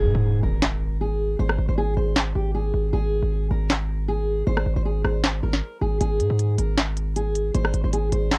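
A heavy, aggressive distorted 808-style bass with a fast attack and a noise layer sits up front in this wistful yet triumphant trap cut in Ab major, running at 156 BPM with a half-time feel, while a full-bodied fingerpicked steel-string acoustic guitar with fresh strings and tape echo carries the melody up front. An electronic impact hits at the start and rings until 1.4 seconds. At 0.6 seconds a trap kit with a sharp snare, crisp hi-hats, handclaps and rim clicks enters, roughened by vintage 12-bit sampler grit, all within a dark, dry production cut from a longer piece.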